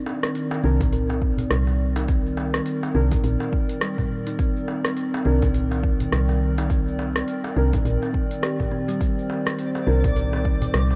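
A swung 104 BPM groove in 4/4 sets the pace for this hypnotic, mystical organic downtempo excerpt in C minor, as a deep, up-front electronic kick and an organic electronic kit of crisp hi-hats, cabasa and rim clicks sit beside a darbuka played with soft hands on a clay shell. A round, woody FM bass moves with a sidechain pump beneath a ringing, mellow kalimba tracing delayed arpeggios, while muted felt-like synth keys with chorus and delay murmur in the background over a lo-fi, nostalgic pad holding a single Cm9 chord. At 9.7 s a twinkling granular texture with an octave-up shimmer appears, and the whole mix carries the warble and pitch drift of worn cassette tape in a light reverb.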